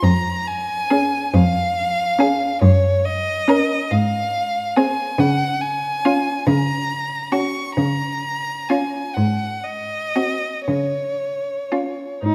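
Classical slow romantic movement for string quartet in Db major, lyrical and serene, moving in a rubato 6/8 at 38-48 BPM in dotted quarters, and cut from a longer piece. A clear, close first violin sings the melody high with vibrato over a rich, bowed cello bass that sits up front from the start, while a second violin line and a focused viola accompaniment enter at 0.9 seconds. A wet recital hall reverb surrounds the quartet as the harmony settles from Ab7 back home to Db at 10.7 seconds.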